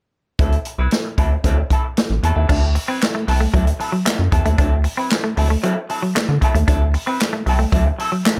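Recorded in a small room, this strutting funk excerpt at 115 BPM in D mixolydian opens on a D9 chord with a rubbery, dark square bass up front, an acoustic drum kit of punchy kick, medium-tuned snare, hi-hat, crash cymbal and handclaps, and a clean, picked semi-hollow electric guitar through wah, before a twangy, slightly broken-up fingered electric guitar riff enters at 2.5 seconds.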